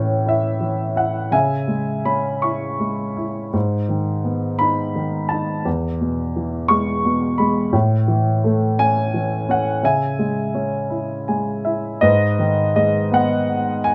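In a 6/8 with free rubato, the pulse moves at 53-58 BPM counted in dotted quarters, giving this short classical excerpt a slow, lyrical breath. A single baby grand piano carries everything as a reflective, dark solo, ranging from E2 up to C#6 and tuned to A4 = 439 Hz. Its tone is warm and worn, with a long sustain, and it sits present and up front in a moderate small-room reverb. The harmony moves through A, C#m, G#m and E before returning to A and C#m. A brief piano fill at 10.9 s leads into a new passage at 12.0 s, which opens on G#m just before the cut at 13.9 s.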